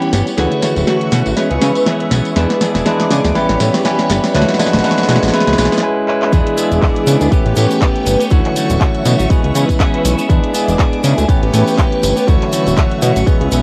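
Filtered disco house with a joyful, funky swing, cut from a longer piece and carrying the character of a home cassette recording. A barky tine electric piano, a swirling phased string machine in the background, a twangy clean electric guitar riff and a fat, saturated analog bass all pump under a low-pass filter, while a house drum kit with punchy snare, bright hats, handclaps and tambourine builds through a fill to a short break at 5.8 seconds. At 6.3 seconds the drop arrives as an up-front electronic kick and a faint egg shaker join, over a repeating four-chord progression.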